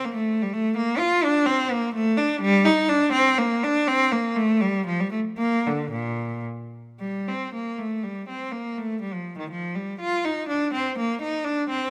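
A rich, focused cello sits up front in a moderate scoring-stage reverb of about 1.7 seconds, captured by close, detailed microphones. This introspective, flowing baroque-style suite movement for one bowed cello moves in 3/4 with a rubato feel between 105 and 128 BPM. The line opens in Bb major, turns to G minor at 7.0 seconds, and spans Bb2 to F4 with vibrato and a smooth top in this brief cut from a longer piece.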